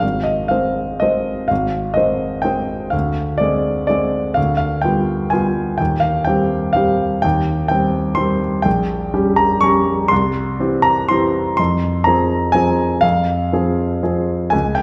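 A clear concert grand piano sits up front in a wet recital hall, its natural tone carrying a deep bass and short sustain that the room's long reverb tail of 1.8 seconds softens and extends. This is a classical piano waltz in 3/4 at about 124 BPM, played solo with rubato so the beats fall unevenly and the pulse breathes. The mood is bittersweet and wistful, opening in C minor and turning toward F minor from 8.7 s. The harmony drifts from A-flat through a half-diminished chord and a dominant seventh before settling on C minor, then moves through a diminished chord and C major to land on F minor. The piano spans a generous range, from low Ab1 up to Db6, and this brief passage is cut from a longer piece, ending at 14.8 s.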